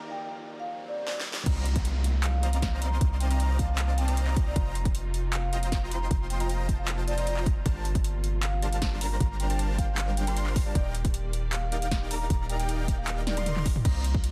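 Over a half-time 4/4 pulse at 155 BPM, this lush, dreamy future bass excerpt opens with a short build-up in which a bright, barky overdriven tine electric piano, drenched in delay and sidechain pumping, plays accompaniment alongside a background riser, swell and downlifter, while a filter sweep works on the supersaw and a drum fill arrives at 1.1 seconds. A mellow vibraphone with soft mallets carries the melody from the start, its metallic ring softened by medium motor vibrato, delay and pumping. At 1.5 seconds the drop lands: a hard-clipped electronic kick and a deep, boomy 808-style bass sit up front, and a dubstep kit with a huge snare, metallic hats, handclaps, toms, crash and ride adds tape-warm, filtered weight. A huge, thick, detuned supersaw riff with a sub octave and a bright edge pumps against the kick, while an airy chorused lead spins soft arpeggios and a smooth, rich string section holds sustained chords in the background. 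The harmony moves from Cm11 through F7sus4 and Gm11 back to Ebmaj7, and a second drum fill near 13.3 seconds closes the drop in a dense, heavily limited modern master with digital ambience.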